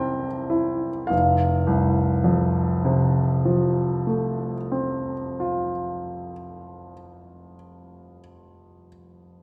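Nostalgic and serene, this short cut from a longer piece is a romantic classical nocturne for solo piano, moving in a gently flowing 12/8 with a free, rubato feel. The grand piano has a clear, natural tone and sits up front, spanning a broad range from F1 up to Bb5, and it plays throughout the full 9.4 seconds. The opening slows down over its first second on a C7 chord before settling onto F at 1.1 seconds, where a new section begins and carries through to 7.6 seconds. A wet scoring-stage reverb with a 1.9-second decay surrounds the instrument, lending the sense of being heard from further back in the room. The piano is tuned slightly high at A4 = 444 Hz, and the recording suits its reflective mood.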